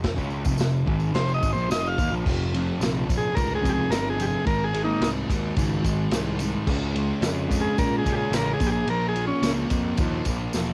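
A straight 4/4 pulse at 109 BPM drives this gritty, swaggering garage rock excerpt in F minor, where a double-tracked, distorted fuzz guitar riff and a growly overdriven bass run from the start alongside a vintage drum kit with dark cymbals and a tight kick, plus a jingly tambourine. A buzzy combo organ with light vibrato carries the melody up front from 1.1 to 9.5 seconds, as the chords move from Fm through F5, Ab, Db and Bb5, and a drum fill lands at 10.5 seconds. The home cassette recording is dry, with tape coloring the guitar and organ and sampler grit on the drums.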